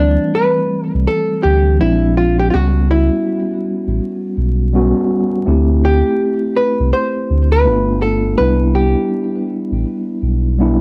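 Lo-fi hip hop at 82 BPM in 4/4, this short cut from a longer piece carries a nostalgic, melancholic mood, with a 62% swing on the sixteenths and tuning set slightly low at A4 = 438 Hz. A dark, clean archtop guitar, miked and amplified, picks the melody up front with a hollow-body tone, softened by a low-pass filter and cassette tape coloring, and it drops out at 10.2 seconds. Alongside it, a mellow tine electric piano plays accompaniment through its built-in speakers, filtered and taped in the same way. A deep, full sine sub bass doubled at the octave sits prominently in the mix, with a fast attack and sustained notes roughened by transformer saturation. The harmony moves from D9sus4 through Bb9 and a rootless A13, returns to D9sus4, then resolves through G7 to Cmaj7, all within light reverb and the vinyl crackle of a home cassette recording.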